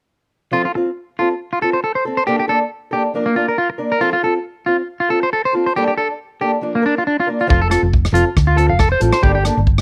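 Lightly swung sixteenths in 4/4 drive this carefree, danceable highlife guitar band excerpt, which opens with a woody, boxy fingerpicked acoustic guitar on old strings and a bright, twangy, slightly broken-up electric guitar playing arpeggios with slapback echo, cycling through F, Gmadd9 and Bb. At 7.5 seconds a round, dark hollow-body electric bass and a vintage drum kit with a tight kick, hi-hat, rim click and rolled-off top join in. Every part sits up front in a dry, close 1970s-style small-room recording.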